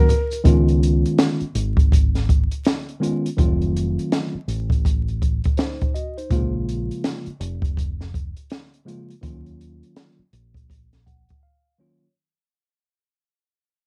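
A dry, homemade cassette sound with vinyl crackle frames this mellow, cool hip hop and jazz-hop excerpt, which fades out across its length. A worn, slightly out-of-tune tine electric piano, with its own tape coloring, carries the chords up front. Alongside it sit an open acoustic jazz kit with a high-tuned snare and boomy kick, and a dark, round fingered dub bass. The piano plays a fill from 10.7 seconds, and the drums stop at 11.4 seconds for a closing break.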